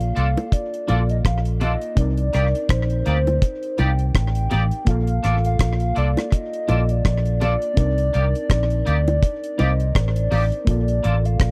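A hollow, woody clarinet-like synth lead with vibrato and tape echo carries the melody over a soft, warbling FM electric piano, an up-front, dark, foam-muted fingered bass and a deep, dry reggae drum kit with a tight kick and rim clicks. Bright, twangy picked guitar stabs join from 0.2 seconds and close, low-tuned bongos from 0.4 seconds, in a smooth, sweet lovers rock groove at 83 BPM in Bb major with a gentle swing, moving between Bbmaj7 and Cm9 in this dry, close 1970s-style studio excerpt cut from a longer piece.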